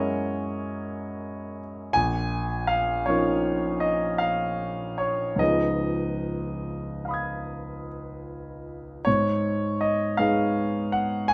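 A clear concert grand piano opens on an F#9 chord in this wistful, mysterious impressionist solo, its natural, up-front tone spanning deep bass at A#1 up to G#6. The phrasing breathes freely in a rubato 9/8, drifting through A#m7 and C#9 before settling on G#m6 at 9.1 seconds. A moderate recital hall reverb surrounds the instrument in this fragment cut from a longer piece.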